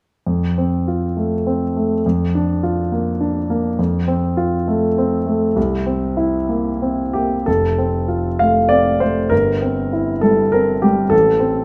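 This is a romantic classical character piece for solo piano in F major, a short fragment lifted from a longer work. The mood is warm and lyrical, moving in 3/4 at roughly 87-105 BPM with a supple rubato that lets the pulse breathe. The grand piano sits up front with a smooth, vintage, warm tone, ranging from a deep F1 in the bass up to F5, and it plays alone from 0.3 to 11.6 seconds. The opening phrase moves between F and Bb over an F bass before leaning into C7, and a second phrase begins at 7.5 seconds, passing through C7 over G to settle on a rootless F chord with A in the bass. A moderate large-studio reverb gives the instrument a gentle halo of space.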